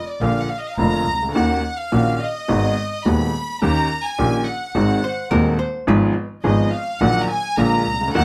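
Playful and nostalgic, this rubato tango excerpt opens with a close, reedy violin section with gut-string tone carrying a second line from the first moment, joined at 0.2 s by a woody, polished upright piano and a smooth, distant bowed double bass, while a dark, clean hollow-body electric guitar picks a brief second line between 5.0 and 6.3 s, all in light reverb.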